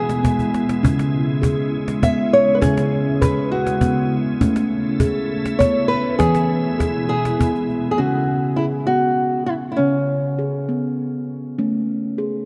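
A round, ringing steel tongue drum played with soft rubber mallets spins gentle arpeggios through this meditative world excerpt in C# minor at 67 BPM in a straight 6/8, joined by a dark, fingerpicked nylon-string guitar melody bathed in diffuse ambient delay, a detuned, chorused organ-like pad holding sustained chords until 8.0 seconds, and a snappy cajon struck with hard hands that adds a fill at 0.4 seconds, all set in a cathedral-like reverb.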